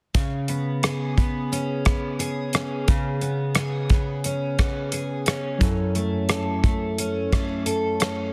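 Indie and bedroom pop at 88 BPM in C# minor, mellow and lonely, this short excerpt sets a bright, full-bodied picked steel-string acoustic guitar with analog chorus and warbly pitch drift up front over a dry, damped 70s drum kit of tight kick, hi-hat and rim click with a rolled-off top and softly clipped snare, joined at 5.6 seconds by a worn, slightly out-of-tune tine electric piano through cassette tape as the harmony moves from C#5 to F#m7, all in a small room with light reverb and a dense, heavily limited master.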